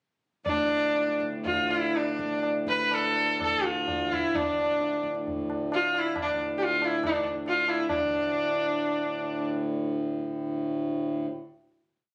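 An eight-beat tabla cycle at two strokes per beat in straight 4/4, high-tuned with a short ring, quickens from 120 to 164 BPM through this brief, introspective and solemn Hindustani classical piece, where a rich bowed sarangi with sympathetic strings carries the up-front melody with light vibrato and gliding portamento, while a reedy, nasal hand-pumped harmonium holds a breathing drone beneath; the tabla stops at 8.0 seconds and the sarangi at 9.5 seconds, leaving the harmonium to sustain the final chord until 11.3 seconds under light reverb in a phone recording of the room.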